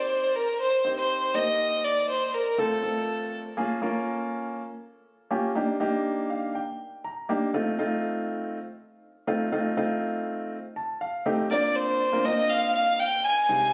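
Captured on a phone in the room and finished with light studio reverb and compression, this short clip from a longer upbeat, euphoric pop piece moves at 121 BPM in Bb major. A warm grand piano sits up front as accompaniment throughout, with chords moving from Cm through Db6 and F7 to a closing Bbadd9 and fills at 6.1 and 10.5 seconds. A single bowed fiddle, dark and woody, close and up front, carries the melody with light vibrato, portamento and a digital delay, opening the piece and returning at 11.5 seconds while the piano plays alone in between.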